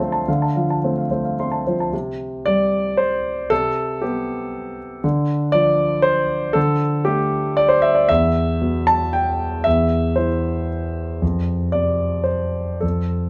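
A rubato lilt in three shapes this tender, hopeful fragment of neoclassical minimalist piano, a lone warm concert grand with deep bass sitting up front in light room reverb, moving from Dm7 through Cmaj7/E to F across roughly 13.3 seconds cut from a longer piece.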